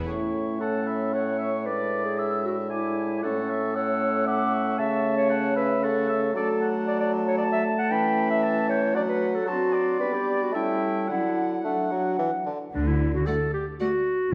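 A quick classical-period movement for symphony orchestra, this spirited, cheerful passage moves at 114 BPM in 3/4 with a rubato feel, cut from a longer piece and opening in A major before turning to D major from 6.4 s. Woodwinds carry most of the texture: an up-front clarinet with a soft attack and smooth top runs through to the end, while an airy, mellow flute in its upper register and a distant, roomy oboe add further lines above it. A clear, present bassoon supplies the accompaniment underneath, and a French horn section, warm with light vibrato, holds sustained chords. Around 12.7 s the other winds give way as a focused, close cello section and a distant double bass section take up the bass, and at 13.3 s lush, bowed violins sound a brief melody in the background alongside a smooth-toned viola section. The harmony travels through dominant-seventh colours and a passing G chord before settling on D, and the whole is set in a recital-hall reverb with a dark production.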